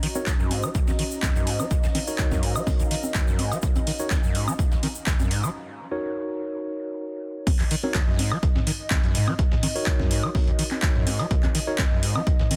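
A squelchy, distorted acid bass riff opens this raw, driving acid house excerpt alongside a booming, overdriven analog drum machine with metallic hats, a gritty, dusty soul sampler-style drum kit and a lo-fi, warbling tape-like pad. These are soon joined by a moody, detuned dark analog pad sustaining chords in the background, mellow tine electric piano stabs trailed by dub echo, a grainy egg shaker and a punchy, up-front electronic kick. The shaker stops at 5.5 seconds as a break leads into the drop at 7.5 seconds, the whole held in a dense, heavily limited master.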